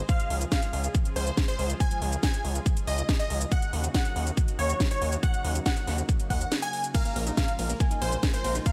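A straight 4/4 pulse at 140 BPM drives this uplifting trance excerpt, anchored by a punchy, up-front electronic kick and a house kit with cracking snare and metallic hats, while a gritty, nasal sawtooth bass pumps against the sidechain beneath chords moving from Db to Ebm7 at 3.5 seconds and Bbm7 at 6.9 seconds. A detuned supersaw stab carries the driving, emotional melody with tape echo, joined by a very quiet grand piano playing a second line over a lush, warbling unison pad in the background. At 6.9 seconds a velvety synth lead with vibrato and portamento and a round analog pluck playing arpeggios join, all set in a digital ambience.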